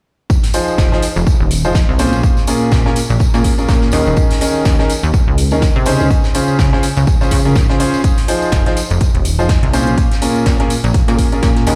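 Heard through a big sound system in a bare room with large studio reverb, this soulful, bittersweet piano house excerpt swings its sixteenths over a punchy, up-front electronic kick, layered metallic electronic hi-hats, and a distant, roomy brush kit with a fat snare, joined by a saturated tambourine part carrying maracas and group handclaps in the background. A brilliant grand piano riff, treated with tape echo and sidechain pumping, moves through Fm7, Bbm7, Eb7sus4 and Dbmaj7. From 0.8 seconds, a funky analog bass of sawtooth and pulse waves, with a fast-attack filter pluck, pumps underneath.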